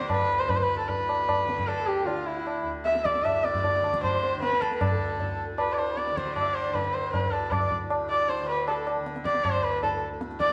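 A wet stone-room reverb surrounds this meditative, introspective Hindustani excerpt in raga kafi at 154 BPM in 4/4, speeding up across its 10.5 seconds as a rich, nasal sarangi glides up front with light vibrato, portamento and airy bowing over sympathetic strings, backed by a close, dry, low-tuned tabla, a buzzing, shimmering tanpura drone on D, and a reedy, breathing pedal harmonium playing a very quiet second line.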